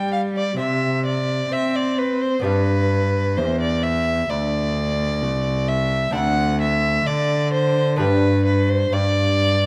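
Classical baroque-style sonata movement with continuo at 65 BPM in 4/4, cut from a longer piece, flowing and serene, where a smooth, even solo violin with vibrato sings the melody up front beside a focused, close solo cello with vibrato on the bass line, while a delicate fingerpicked gut-strung lute with doubled strings accompanies in the background, all captured by close, detailed microphones in light reverb over the G and D chords that shape its 9.7 seconds.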